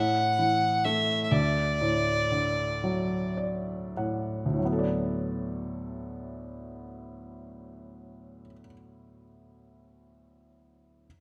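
A moderate stage reverb surrounds this short cut from a longer Celtic slow air in D major, a nostalgic, pastoral piece in a rubato 6/8 that drifts between 29 and 45 BPM and slows through its opening. A single clear, bowed fiddle with light vibrato carries the melody up front until 3.4 seconds. A mellow, felt-muted upright piano with audible action noise supports it over A5, D and D6 harmonies, adding a gentle fill from 2.8 seconds and continuing alone to 11.1 seconds.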